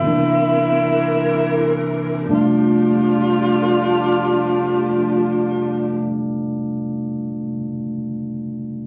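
Intimate and romantic, this short jazz fragment, cut from a longer piece, swings gently in 4/4 and opens by slowing down through its first 2.3 seconds as a C7 chord settles onto F6/9. A growling tenor saxophone carries the melody up front, its breathy subtone playing sits in a narrow range and is coloured by vibrato, scooped notes and a raspy, gritty edge. Beside it, a barky tine electric piano heard through a combo amp provides bright, clean accompaniment across a broad span of the keyboard. A dark symphonic string section sits lower in the mix, holding lush bowed chords with soft attacks, vibrato and expressive portamento. The saxophone and strings fall away by about 6.0 seconds, leaving the electric piano alone until 8.9 seconds, all heard with the compressed sound of a phone recording in a club-like room with moderate reverb.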